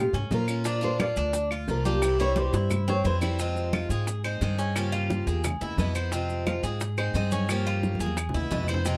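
Latin music in the Cuban son and guajira vein, this nostalgic, sultry piece moves at 176 BPM in 4/4 in F minor, opening with a thumb-plucked, classical nylon-string guitar melody that carries a solo passage until 3.4 seconds, over Bb minor, Bb and C chords. Beneath it, a metallic, double-strung Cuban tres plays arpeggios, a thumpy, dark upright bass with gut strings sits up front, and a bright, boxy parlour steel-string guitar adds picked accompaniment. Set in the background are ringing congas, round low-tuned bongos, woody saturated claves and grainy, mellow maracas, with drum fills leading into the shift at 3.4 seconds and again near the close of a second section cycling Fm, Ab, Gm7b5 and E, all captured with close, detailed microphones and little reverb.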